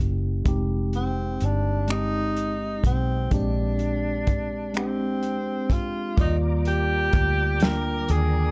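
A dark, intimate small-room sound frames this slow 6/8 R&B excerpt in Eb major at 42 BPM, where a mellow tine electric piano and a round, foam-muted fingered electric bass carry the Fm9 and Bb13 changes from the start, a smooth soul drum kit with finger snaps, hi-hat, punchy kick and snare enters at 0.5 seconds, a distant, roomy jazz-style tenor saxophone solo with vibrato sings up front from 1.0 seconds, and a lightly overdriven tonewheel organ with key click, chorus vibrato and slow rotary speaker slips in behind on an Ebmaj7 at 6.2 seconds.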